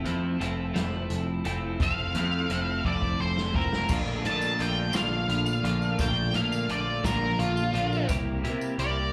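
Two twangy, chorus-lush twelve-string electric guitars, one set back with slapback echo, open this carefree, upbeat indie rock cut in a straight-feel 6/8 alongside a growling, overdriven bass up front and a vintage drum kit with dark cymbals and a tight kick, before a distorted octave-fuzz lead guitar takes a solo from 1.8 seconds, a drum fill arrives at 2.8 seconds, and a jingly background tambourine joins at 3.9 seconds, all moving from Fmaj7 through Bbmaj7 to C7 and heard as a live club gig through the venue's PA.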